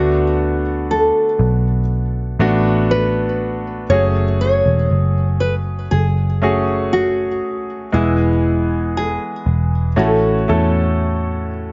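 A fingerpicked nylon-string guitar carries the melody in this heartfelt, hopeful pop ballad, its full-bodied, deep classical tone touched with delay. Underneath, a clear concert grand piano plays the accompaniment with a smooth, vintage character, deep bass and short sustain. A dark, foam-muted electric bass sits up front with a round, punchy, amped sound, anchoring the low end. At a slow 60 BPM in a straight 4/4, the harmony moves through Bm7, F#madd9 and E before settling on A6 at 10.0 seconds. All three parts play together through this brief cut from a longer piece, with the guitar ending at 11.5 seconds, and the mix has light studio reverb and a soft, rolled-off top.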